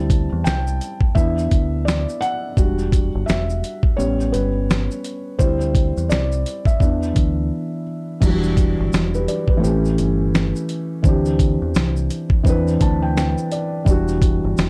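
Melancholic and nostalgic, this lo-fi hip hop excerpt in a swung 4/4 pairs an intimate, thick-felt upright piano, low-pass filtered and vintage with audible action noise, which takes a solo until 8.2 seconds with a break from 7.5 seconds, with a round, deep dub fingered electric bass and a gritty, compressed dusty soul sampler-style kit of thumpy kick, snare, hi-hat, shaker and crash re-recorded in a small room, set in a dark production with light reverb.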